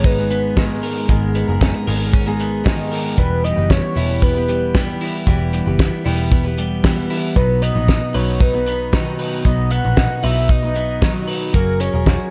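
From the first moment, this nostalgic, youthful excerpt of jangly indie pop sets a cloth-damped, thuddy drum kit with a fat snare and 12-bit sampler grit up front alongside a dark, foam-muted picked electric bass, a bright, compressed twelve-string electric guitar playing arpeggios, and a full-bodied picked steel-string acoustic guitar, while a soft, mellow octave-layered synth lead with chorus and vibrato sings the melody over chords moving from G#madd9 through Em and B to F#add9, all in light reverb.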